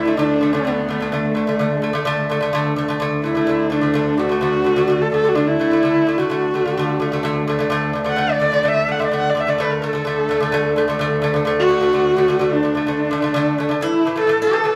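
A rich, husky horsehead fiddle leads this Mongolian folk excerpt, its bowed horsehair strings carrying an expressive melody with vibrato and portamento, placed up front. The mood is galloping and proud, moving at 128 BPM in a straight 4/4 in a D gong mode. Beneath it, a fingerpicked lute with gut double strings, some doubled at the octave, plays delicate arpeggios, also close at hand, while a clear, focused cello holds a low D drone with its own vibrato. At 13.8 seconds a steel-string zither, played with fingerpicks, adds a brief silvery, ringing second line as the harmony shifts from D5 to A5. The band plays live in one room, bathed in a wet large-studio reverb, and the piece is cut from a longer performance.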